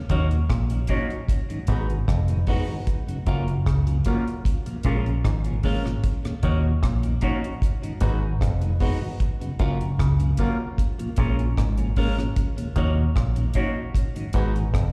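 This excerpt of roots reggae opens with everything entering together: a deep, dry drum kit with a tight kick, rim clicks and hi-hat sits up front beside a round, punchy, foam-muted electric bass that carries the low end. The mood is serious yet laid-back, moving in a straight four with an unhurried pulse through a minor progression of seventh chords that cycles from Ebm7 through Abm7, Gbmaj7 and Bbm7. A clean, picked electric guitar fills in the accompaniment, colored by phaser, tape echo and plate reverb, while a mellow tonewheel organ with key click and slow rotary speaker hovers in the background. A muted, nasal clav plays a hollow, overdriven riff in the lower register, and a woody upright piano adds dark stabs higher up with plate reverb. Heard as a live gig through the venue's PA, the sound carries a light recital-hall reverb around the tight rhythm section.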